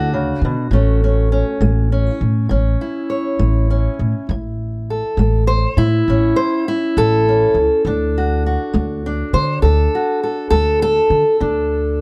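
A slow 12/8 pulse at 67 beats per minute, counted in dotted quarters and played straight, carries this soulful, gritty acoustic country blues in A major. A fingerpicked steel-string acoustic guitar carries the melody throughout the 12 seconds, ranging from A2 up to C#5 with a dark, concert-style tone, and the finger squeak along its strings adds a close, human grit. Beneath it, a pizzicato upright bass strung with steel holds down the low end from A1 to D3, its sound woody and thumpy. Both instruments sit up front in a light reverb, giving the duo an intimate, present feel. The harmony touches D at the opening, settles on A at 0.7 seconds, and turns back to D at 7.9 seconds, in this short section cut from a longer piece.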